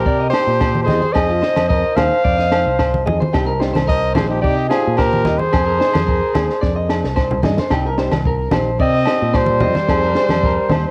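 Bittersweet and warm, this highlife guitar band fragment moves at a straight 110 BPM in C minor, swaying between Cm and Fm7 as a close-miked trumpet with light vibrato carries the melody up front and a clear alto saxophone with scooped notes adds a second line, both with a cassette-tape hue. Beneath them an electric guitar at the edge of break-up picks compressed arpeggios through tape echo, while a round, punchy fingered bass and a compact cocktail kit with a high-tuned snare anchor the groove, the kit breaking into a fill from 6.6 to 7.7 seconds. Low-tuned congas played with soft hands, background agogo bells and a boxy, woody old ladder-braced acoustic guitar, fingerpicked on old strings, fill out this homemade cassette recording, cut from a longer piece, with light studio reverb.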